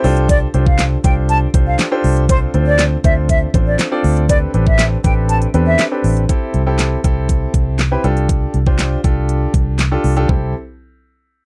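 A straight, steady 4/4 dance-pop groove sets up a summery, upbeat mood, as a layered pop drum kit with a knocking kick, fat snare, crisp hats and handclaps drives a dark, foam-muted fingered electric bass and a clear, intimate concert grand piano, both pumping with sidechain compression, while an airy silver flute with vibrato and tape echo carries the melody from 0.3 to 5.8 seconds over chords such as F69/C, Dm7 and Am11 in a dry, close 1970s-style studio sound.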